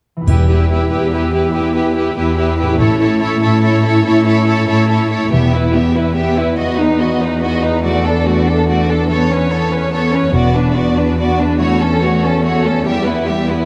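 Rolling in a lilting 12/8 with a straight feel, this cinematic adventure cue sounds determined and swashbuckling, a fragment taken from a longer score. A background concert harp rings out thumb-plucked arpeggios beneath a chamber violin section that carries a smooth, even melody, while a second, close and expressive violin line and a lush viola section with soft attacks fill in the harmony. An up-front cello section anchors the bass with a rich, vibrato-laden tone, doubled early on by woody double basses set in the background, and a very quiet, tight French horn section holds sustained chords until 5.1 seconds. Timpani and a dark-toned triangle mark only the opening moments, lending a brief ceremonial lift. From 5.3 seconds the music builds steadily over a held E bass as the chords move through B/E, D/E, Aadd9/E, Bm/E and F#m/E before settling back on Em. A moderate concert hall reverb gives the ensemble a spacious, heroic glow.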